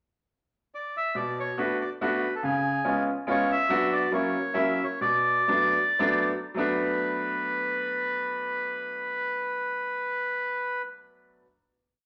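Bathed in the wet reverb of a large studio, this short, nostalgic and bittersweet musette waltz in B minor drifts with rubato between 102 and 143 BPM: a reedy, vintage bandoneon enters at 0.7 s with a motif-based melody in period phrases, a bright, woody upright piano joins at 1.1 s with closely voiced backbeat chords, both up front, and the tempo slows from 3.7 s before the piece settles on a final chord at 6.6 s.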